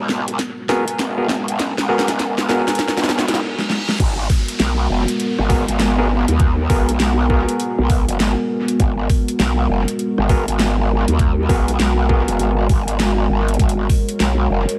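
Glitch hop at 100 BPM in G# minor with a swinging sixteenth feel, gritty and swaggering, this excerpt opens on a G#m9 build-up where filter sweeps move across the overdriven, stringy clav stabs and the deep, detuned analog pad, drum fills roll through the dubstep kit, and a reverse cymbal and downlifter sit in the background from 3.4 seconds before the drop lands at 4.0 seconds, driven by a growling, wobbling, up-front bass, a knocking kick, a huge snare and metallic hats, all set in an echo-heavy mix with light reverb and vinyl crackle.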